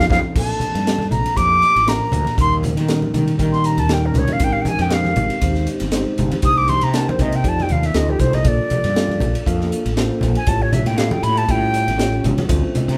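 Funky and soaring, this short cut of electric jazz fusion in Bb major moves at 118 BPM in straight 4/4, with a reedy, up-front concert flute soloing over bell-like tine electric piano, a very quiet ethereal pad with ensemble chorus, a growly fretless bass, background congas and a crisp, gritty drum kit that opens with a fill and band accent and fills again at 8.1 seconds, all in a wet large studio reverb as chords run from Bbmaj7 through Eb7, Abmaj9, Cm9 and F13, back to Bbmaj7 and on to A7b13.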